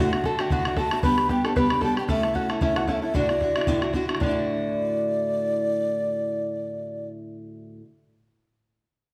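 A moderate recital-hall reverb lends a roomy glow to this short cut from a lively, rollicking Celtic reel in D major, pushing along at 227 BPM in a swung 4/4. Up front, a hollow, airy wooden baroque flute with vibrato carries the melody, while a dark, boxy parlour steel-string guitar with old strings fingerpicks the accompaniment and a plunky, twangy open-back banjo plays a second line in the background. A boomy, band-limited bodhran drives the opening strain over D, G, A and Dadd9 chords until 4.3 s, just after a second strain begins at 4.2 s.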